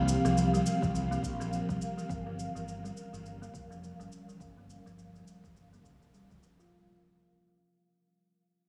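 Bathed in a lush hall reverb and fading out from start to finish, this brief, mystical and meditative organic downtempo cut lays an ethereal, chorused pad with tremolo and sidechain pumping over buzzing, woody kalimba arpeggios with tape echo, both shaped by filter sweeps, while a round, dark fretless bass pumps underneath, a gritty shaker and a deep electronic kick entering at 0.8 s carry a lightly swung groove, and a barely audible bronze singing bowl rings in the background.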